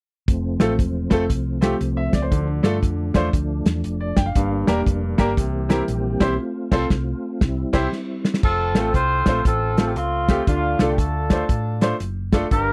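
A warm soul drum kit with dark cymbals and a punchy kick drives this uplifting, swung gospel excerpt, alongside a round hollow-body electric bass, a soft, flute-like tonewheel organ holding sustained chords through a slow rotary speaker with chorus vibrato, and a clear, open baby grand piano that enters just after. The band hits accents from 6.4 seconds, capped by a drum fill, and at 8.4 seconds the organ stops as a mellow, vintage horn section takes up the melody with light vibrato. The dry, close 1970s-style recording keeps the drums, piano and horns up front for a soulful feel.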